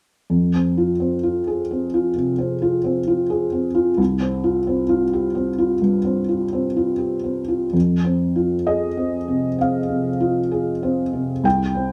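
Classical music in F minor at a rubato 65 BPM, cut from a longer piece. A soft, mellow, intimate felt-muted upright piano sits up front with a longing, melancholic accompaniment, tuned to A4 = 441 Hz and spanning C2 to G5; it moves from Fm to Csus4 at 4.0 seconds and returns to Fm as a new section opens at 7.7 seconds, set in moderate studio reverb.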